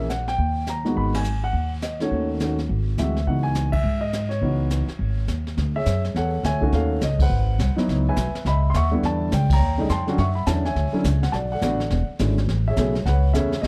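The recording has a dark, warm production with light reverb, and the piano and upright bass sit up front in an intimate, smoky mix. This is a brisk jazz piano trio piece in C# minor at 208 BPM in 4/4, with a swung eighth-note feel and a moody atmosphere, cut from a longer piece. The mellow grand piano carries the melody from C#3 to C#6, with long sustain and audible action noise. The woody, pizzicato upright bass with steel strings holds down the low end, and the brush kit in a studio room adds dusky cymbals, a high-tuned snare and a boomy kick. The opening passage moves through G#m7, D#m7b5 and G#aug7 to C#m11, with the band hitting accents together at 1.1 and 3.7 seconds. At 5.6 seconds the harmony shifts to Dmaj9#11 and later drifts through Em7, Dmaj9, Bm7 and E6 before settling on Amaj9.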